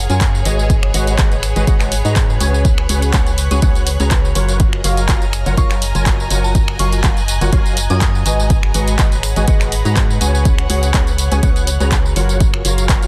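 A punchy, tape-warm electronic kick and a hollow, dark, organ-like FM bass with tube saturation drive this uplifting, euphoric piano house piece at 123 BPM in F# major, together with an analog drum machine of finger snaps, handclaps, hi-hat and tambourine, the kick and drum machine both re-recorded in a small room. A percussive organ stab riff with chorus and delay pumps against the beat over a silky analog string pad and a lush, bowed symphonic string section in the background, cycling through F#maj7, G#m7 and C#7sus4. A soft, warbling vintage synth bell carries the melody with chorus, phaser and delay, briefly at 0.1 seconds and again from 5.6 to 8.4 seconds, in a dry, dense, heavily limited mix.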